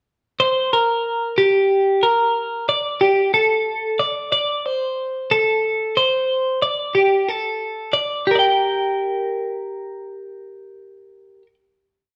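A bright, clean twelve-string electric guitar carries this short rock piece alone, its picked, twangy tone compressed and up front as it circles an intricate ostinato in G minor. Moving in a slow 6/8 at 61 beats per minute, the wistful line passes through Gm, D5, Amadd11 and Gsus24 before settling on a final G minor chord at 8.3 seconds. A moderate stone room reverb surrounds the guitar with a live, resonant sense of space.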